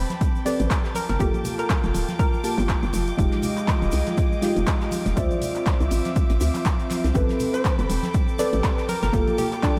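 A dreamy mix soaked in lush hall reverb carries this moody deep house excerpt at 121 BPM with a 16th-note swing, led by a punchy, overdriven electronic kick and a hollow, bouncy FM bass that pumps against it, over minor ninth chords moving from Am9 through Gm9, Fm9 and Dm9. An airy, breathy pad with detuned chorus and vintage sampler grit sustains the harmony beside soft, dark, nasal chord stabs trailing a diffuse ambient delay, while a focused symphonic violin section shimmers with vibrato in the background. An overdriven deep house kit of handclaps and hi-hat, a very quiet acoustic kit of hi-hat and snare, soft-handed congas and a grainy tube shaker fill out the groove, and a square-wave pluck with ring modulation, cassette tape colour and analog delay appears from 0.5 to 2.9 seconds and returns at 7.5 seconds.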